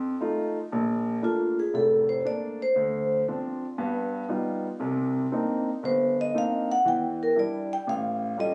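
A warm concert grand piano opens this relaxed, sophisticated swing jazz excerpt in Bb major at 117 BPM, laying down deep-bass accompaniment that moves from F7 through Bbmaj7, Dm7 and Cm9 toward a closing Aaug7. At 1.2 seconds a metallic, ringing vibraphone played with medium mallets takes the melody up front, its slow motor vibrato shimmering above the piano. The sound has a phone-in-the-room quality, with compression and a club-like reverb.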